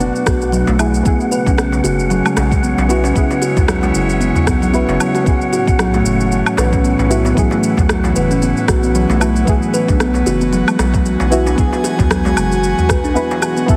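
A gently swung sixteenth-note groove in 4/4 carries this mystical, warm organic downtempo piece. An electronic shaker, rim click and woodblock tick from the start, a deep electronic kick joins at 0.3 s, and a crisp, metal-shelled darbuka sits in the background from 0.7 s. A round, dark analog bass and a soft, nasal chord stab with vintage 12-bit sampler grit, chorus and digital delay both pump against the sidechain, while an airy, detuned pad holds sustained chords with chorus and the same pumping. A woody, mellow kalimba plucks arpeggios through digital delay and stands out as one of the most prominent voices, with a wind-like tuned noise texture breathing faintly behind it through its own reverb. The mix sits in a lush hall reverb with a heavily compressed, radio-like sound, moving through Bm7, C#m7, Amaj7 and E in a passage cut from a longer piece.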